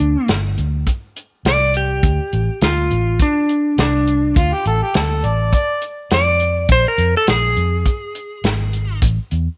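A clean lap steel guitar carries the melody in this brooding, soulful soul blues excerpt, its fingerpicked slide lines shaped with volume swells and a scooped tone that sits up front. Beneath it, a vintage fingered electric bass gives a dark, round, foam-muted low end, amped and close in the mix. A soul drum kit enters at 0.3 seconds with hi-hat, a tight kick and a medium-tuned snare, sounding distant and roomy in a small booth, with a rolled-off top. Between 4.4 and 5.8 seconds an amplified, overdriven harmonica steps in for a brief, gritty jazz-style solo with light vibrato, tongue slaps and scooped notes. The straight-eighth groove with a light sixteenth-note swing moves through G5, Dm7, Bb5 and A5, wrapped in light reverb and studio ambience.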